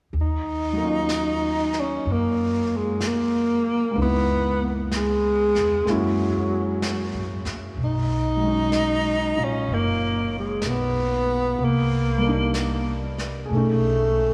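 A long cathedral-like reverb and tape saturation wrap this slow, melancholic jazz ballad excerpt, which moves at 63 BPM with a swung feel in E-flat minor through chords such as Ebm9, Gb9 and B13. Pizzicato upright bass sits woody and thumpy up front beside a soft brushed snare and hi-hat, while a breathy tenor saxophone carries the wistful solo melody with mellow vibrato and scooped notes. From 0.7 seconds a warm, intimate concert grand piano adds accompaniment, its action noise audible.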